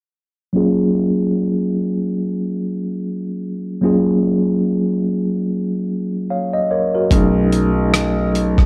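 A mellow tine electric piano carries this short, sensual neo-soul excerpt in F# major, sounding clean through its built-in speakers behind a low-pass filter with a filter sweep, starting on an F#maj9 chord at 0.5 seconds at a relaxed 73 BPM with a swung sixteenth-note feel. At 7.1 seconds the harmony moves to B13 as a smooth, vintage grand piano enters on a low B bass note alongside a dusty, sampler-style drum kit of hi-hat, thumpy kick and rim click, gritty and compressed with overdrive. The dry, close recording has the intimate character of a 1970s studio, with every part sitting up front.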